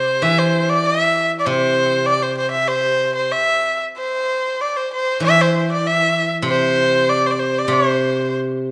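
A clear, nasal erhu carries the graceful, festive melody up front with light vibrato, portamento and an airy bow, while a steel-string zither played with fingerpicks rings out silvery accompaniment beneath it in this short, rubato Chinese traditional excerpt, heard in a moderate scoring-stage reverb.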